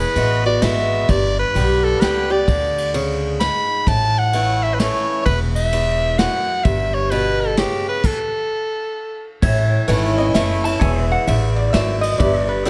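A swung waltz in three drives this nostalgic, down-home honky-tonk and classic country fragment, with picked, boxy acoustic guitar, growly pizzicato upright bass and a soft brush kit with bright cymbals carrying the lilt. A bright soprano saxophone sings the smooth, vibrato-laden melody up front through a stop at 8.0 seconds, falling silent at 9.3 seconds. At 9.4 seconds, twangy pedal steel enters with clean sustained chords and volume swells, and a metallic, nasal lap resonator guitar joins at 10.2 seconds for a fingerpicked slide solo, all in a light reverb.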